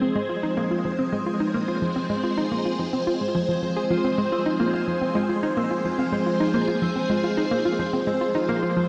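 A swirling string machine with ensemble chorus and phaser holds sustained chords alongside a hollow, bouncy square-wave pluck riff carried by chorus and tape echo, while a resonant, bubbling stepped-filter texture sits in the background of this expansive, hypnotic ambient space music, and at 3.9 s a mellow concert harp enters with ringing arpeggios through tape echo, the whole scene framed by a moderate plate reverb and dark, warm production.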